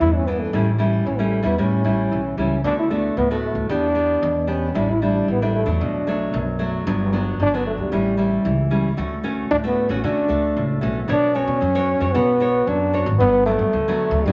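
A lush large-studio reverb surrounds this dark-topped recording, cut from a longer sunny, playful samba and choro piece in D major at 114 BPM. A breathy, mellow trombone carries the melody up front with vibrato and jazz-style scooped notes, while a full-bodied nylon-string guitar fingerpicks a classical-style accompaniment and a woody pizzicato upright bass anchors the low end. The tune moves through chords such as Em7, A7 and Dmaj7, then shifts to a new passage at 11.1 seconds, opening on Bmadd9.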